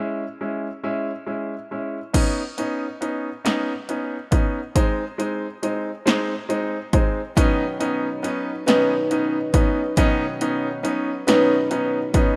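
A melancholic, dramatic six-eight pop ballad excerpt opens on a bright, woody upright piano with audible action noise and long sustain, joined at 2.1 seconds by a punchy, tape-warm analog drum machine of kick, snare, hi-hat and crash, and at 7.4 seconds by fingerpicked steel-string acoustic guitar arpeggios, all wrapped in lush hall reverb within a rough home-demo mix.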